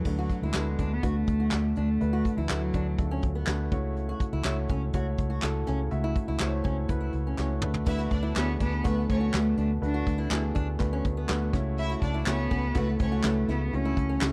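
A dark, woody bowed cello carries the melody with a smooth top and vibrato, falling silent after the opening seconds and returning at 8.4 s in this hopeful, piano-driven pop clip at 123 BPM in a straight 4/4. Beneath it, a mellow upright piano with long sustain moves between D6 and A6/C#, while a round, punchy, foam-muted electric bass sits up front. A vintage brush kit with dark cymbals, a tight kick and a rolled-off top keeps time, adding a short drum fill that leads into the second section at 7.9 s. A fingerpicked steel-string acoustic guitar plays a quiet riff with audible finger squeak, and a crisp group handclap sits very low in the mix. In the second section, a distant, floating violin section played sul tasto with a soft attack adds a pure second line, all set in a dry, close 1970s-style small room with a warm glow and tuning at A4 = 437 Hz.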